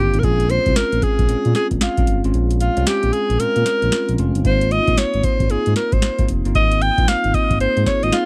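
Upbeat and bouncy, this short R&B cut in a new jack swing style moves at 114 BPM in 4/4, with a swung sixteenth-note feel at 63%. A bright alto saxophone carries the melody up front from the start, singing between F4 and G5 with a light vibrato and a present, pop-style tone. Beneath it, a bell-like tine electric piano plays clean accompaniment colored by a phaser, while a smooth synth bass with a sawtooth and triangle blend, a touch of ring modulation and its own vibrato holds down the low end until 8.1 seconds. A booming analog drum machine enters at 0.1 seconds with a deep kick, crisp snare and metallic hats, and its kick drops out between 2.3 and 4.4 seconds before returning. The harmony moves from Bbm7 to Ab6, and the recording has the dry, close sound of a 1970s-style studio with little reverb.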